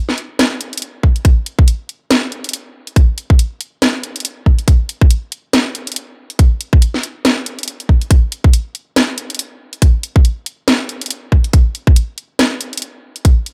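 Dubstep in a dark, cavernous mood, this excerpt rides a swung, half-time groove built entirely from drums. A garage kit of hi-hat and a cracking snare starts at 0.1 s, joined at 1.0 s by a tight, layered electronic kick. Both parts sit up front with a tape-warm, produced character in a dry sound.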